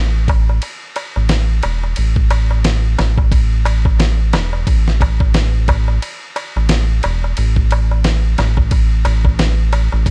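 Heard in a digital ambience, this melancholic, smoky trip hop excerpt moves at 89 BPM in a swung 4/4, with a round, detuned analog bass up front from the start, a gritty, compressed sampler-style kit of thumpy kick, fat snare and ride entering at 0.3 s alongside a small, dry clay darbuka under soft hands, while the harmony alternates between Esus4 and chordless passages before a very quiet, mellow string-machine cello chord arrives at 10.1 s.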